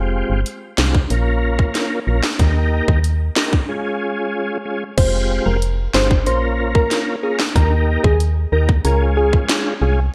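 Cut from a longer piece, this sultry, tough dancehall groove opens on a smooth tonewheel organ pumping through fast rotary speaker and chorus vibrato over a woody, round FM bass up front, with tight-kicked, sharp-snared electronic island pop drums in gated reverb entering at 0.5 s, a break at 3.7 s, and a gentle, keys-like synth lead with chorus and digital delay arriving at 5.0 s, set in bright 1980s-style digital production with light ambience.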